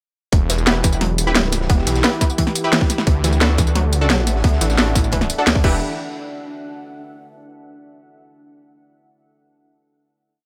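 A tight, overdriven electronic kick and a cracking, bright-hatted drum and bass kit sit up front in this short, mechanical and aggressive dark technical drum and bass piece at 175 BPM in E minor, tuned slightly flat, with a very quiet, gritty, dark breakbeat loop underneath. A thick, detuned saw bass with chorus and tube saturation pumps through chopped phrases over Em and D, while a moody, slow-attack ambient pad enters at 1.2 seconds. In the background sit a 16-step sequence from a bright unison pluck, roughened by 12-bit grit and tape echo, and sparse, echoing orchestra-hit-like synth stabs, before the drop gives way to a final hit at 5.8 seconds.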